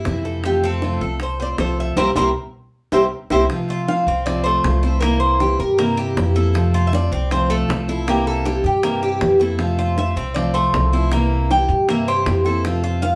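Sunny and danceable, this Cuban son and guajira excerpt moves at 157 BPM in F major over alternating F and C7 chords, with one metallic, double-strung tres picking the melody while a second, up-front tres plays arpeggios, a full-bodied jumbo steel-string guitar picks out the accompaniment, a woody, growly pizzicato upright bass thumps out the low end, and round, low-tuned bongos sit close and dry, all in a live-room sound with a band accent from 2.0 to 3.5 seconds and a drum fill starting at 2.4 seconds leading into the next section.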